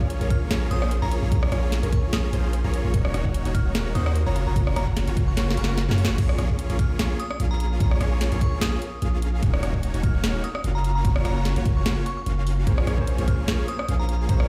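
Dreamy, lush future bass in Bb minor at 148 BPM with a swung half-time feel, this drop excerpt pairs huge detuned supersaw chords and a deep, up-front 808-style bass, both pumping with sidechain, against a knocking layered electronic kick and a trap kit of sharp snare, rim clicks, bright hats and crash, while a glassy, warbling FM bell melody with chorus, phaser and delay floats in the background, a punchy detuned unison pluck arpeggiates through tape echo until 6.2 s, a drum fill leads into the second drop, and a brilliant grand piano with vintage 12-bit grit enters at 12.7 s, all set in a big, roomy digital ambience over Bbm7, Ebm7 and Gbmaj7 chords.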